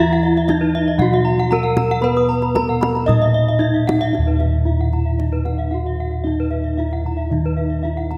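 A straight 4/4 pulse at 113 BPM in Eb pelog drives this hypnotic, brilliant Balinese gamelan excerpt, where round, mellow bossed gongs carry the bass up front; a wooden-mallet bronze metallophone rings out the melody with shimmering paired-tuning beats; a lower metallophone accompaniment stops at 4.1 s as the second section begins; two high horn-mallet metallophones spin arpeggios, one bright and airy, the other dark and smooth; and a tight, dry kendang played with soft hands sits in the background from 0.4 s, all within a concert-hall reverb under a faint mains hum.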